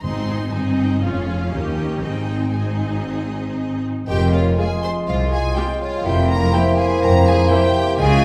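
A soft-mallet timpani stroke on calf heads rings beneath the opening string chords of this stormy, restless classical-period orchestral movement, cut from a longer piece and moving quickly at 121 BPM in 4/4 with uneven beats. The timpani falls away after 0.7 s, leaving the strings in A-flat major. One violin section carries the melody with an intimate tone, light vibrato and a soft attack, while the other plays a clear, intense second line. Bright, lush violas fill in the accompaniment, and focused cellos and double basses hold the bass. At 4.1 s the music turns to F minor and the winds join: an airy, hollow flute, a dark cor anglais and a smooth-topped clarinet add second lines, a mellow bassoon supports them, and a roomy horn section sustains chords in the background. The ensemble is heard from further back in a recital hall with a generous, wet reverb.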